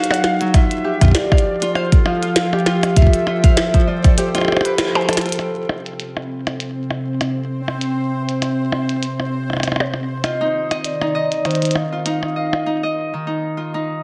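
IDM with an intricate, playful mood and a gently swung feel, cut from a longer piece. A fingerpicked Celtic harp rings up front with arpeggios through the whole 14 seconds, its tape echo blurring the notes, while a dark, lo-fi pad of detuned square and triangle tones holds sustained chords with a slow attack and long release, chorused and washed in its own reverb. A warbling, vintage lead of detuned triangle and sawtooth carries a mellow melody with vibrato, tremolo, lush chorus and tape echo, singing until 5.0 seconds and returning at 10.2. Underneath, a glitchy drum kit of clicky filtered hats, a tiny snare and percussion blips runs through digital delay, joined early by a deep, up-front electronic kick that drops out after 4.2 seconds. A band accent and drum fill lead into the second section, where a filter sweep moves across the pad and a resonant, bubbling sawtooth texture with random filter steps enters, before a closing break leaves the harp ringing alone in a moderate digital room.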